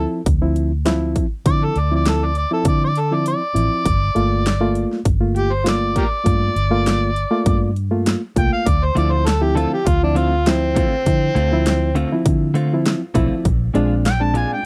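Over a straight-eighth 4/4 groove at 100 BPM with a light sixteenth-note swing, this smoky, mournful soul blues excerpt in D minor features a gritty, overdriven harmonica solo with scooped notes, tongue slaps and slapback echo, backed by a reedy electric piano, a dark, round, foam-muted fingered bass and a punchy, layered electronic dubstep kit with a huge snare and metallic hats whose kick and snare drop out from 3.3 to 3.9 seconds, while a compressed, clean, direct-recorded guitar adds picked stabs with spring reverb from 9.0 seconds over Dm7 and Bb7 in a dry, close 1970s-style studio sound.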